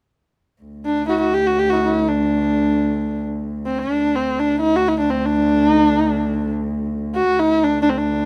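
A clear, focused bowed kamancheh sits close and up front from 0.9 s, singing a vibrato-laden melody with portamento between C4 and G4 over a dark, veiled con sordino cello drone on D2 that enters at 0.6 s with its own vibrato and portamento, giving this festive yet warm fragment of a Persian modal ensemble piece a rough home-demo feel with studio ambience.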